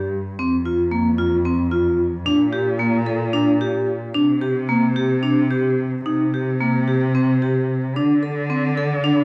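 This contemporary chamber excerpt opens with a vibraphone and a cello sounding together, moving in an uneven 7/8 metre at 223 eighth-note beats per minute with a straight, hypnotic yet restless feel. Struck with hard mallets, the vibraphone spins metallic, ringing arpeggios in its middle register, coloured by a medium motor vibrato and a boxy small-room character that sits up front. Beneath it, a single bowed cello supplies the bass line with a rich, expressive tone, soft attacks, vibrato and portamento. The harmony moves from F5 to Bb and Csus2, then shifts into a new section at 6.1 seconds with C5 and D5 before the passage breaks off at 9.2 seconds. A moderate recital-hall reverb and a dark, warm production give the whole a rounded, enclosed sound.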